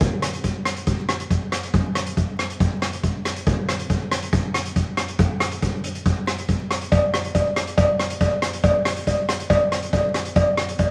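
Calypso at 139 BPM in a straight 4/4, this tense, dramatic fragment cut from a longer piece rides on an airy, polished, up-front street-band drum kit of hi-hat, rim click and a boomy kick, joined at 6.9 seconds by a metallic cowbell, all set in a wet small-room reverb with a layer of vinyl crackle.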